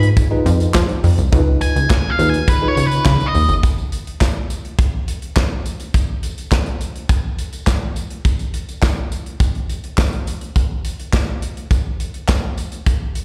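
Late-night and slick, this early-eighties boogie funk cut opens with a dark, distorted octave-fuzz lead guitar solo carrying slapback echo and plate reverb over a worn, slightly out-of-tune tine electric piano, a punchy sawtooth analog bass with a filter pluck and fast attack, and a polished, airy acoustic drum kit of tight kick, snare, hi-hat and handclaps, moving from Fm7b5 to Db7 before guitar, piano and bass drop away by 3.6 seconds, leaving the drums and a jingly tambourine tucked in the background to carry on until 13.2 seconds, as if heard at a live gig through the venue's PA in recital hall reverb.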